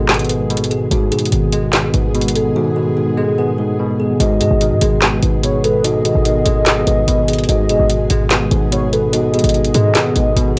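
Melancholic, dark half-time hip hop trap, cut from a longer piece, in which a woody, ringing kalimba melody rides over a bell-like tine electric piano, an ethereal chorused pad in the background and a punchy, tight 808-style bass, while an up-front trap kit with a woody snare, metallic hats and handclaps drops out from 2.6 to 4.2 seconds, after which a velvety, chorused synth lead enters with a second line, all in gritty, dry digital ambience.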